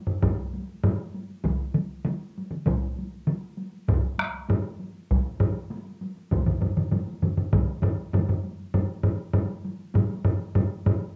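Japanese traditional taiko drum ensemble music at 99 BPM in a straight 4/4 feels powerful and ceremonial in this short cut from a longer piece. Up-front solo taiko drums, struck with hard sticks in a live room, play from 0.1 to 11.0 seconds alongside three ensembles: one played with heavy sticks sits close in a live room, a second with hard sticks sounds distant in a large room, and a third with hard sticks stays in the background of a small room. All of this comes through a short, wet booth ambience and the character of a home cassette recording, with a new section arriving at 8.7 seconds.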